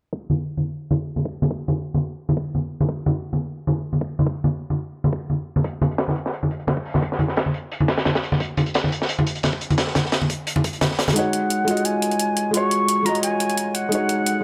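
Liquid drum and bass with a rolling, soulful mood, cut from a longer piece, opens with ringing, hard-handed congas up front over a gritty, thumpy electronic kick sitting in the background, all under a filter sweep, while a dark, smooth breakbeat kit with a high-tuned snare joins at 5.6 seconds. The kick drops out just before 11.2 seconds, when a build-up begins over an Ebm11 chord: a soft, thick-felt upright piano plays intimate accompaniment, a compressed, sampler-style electronic hi-hat enters, and an airy metal jazz flute with vibrato and a crisp, chiffy attack carries the melody through tape echo and its own filter sweep. The whole mix sits in a small room with light reverb.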